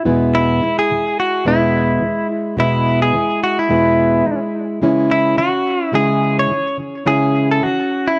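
Sunny and heartfelt, this short pop excerpt moves at 107 BPM with a light sixteenth-note swing, its chords shifting from E to C#m. A full-bodied, fresh-stringed jumbo acoustic guitar, fingerpicked and plugged in, carries the accompaniment up front from the start, while a bright, twangy clean electric guitar, recorded direct and compressed, enters at 0.3 seconds with a picked melody touched by tape echo. A wet studio reverb and the worn, warbling pitch drift of old cassette tape wrap the whole recording.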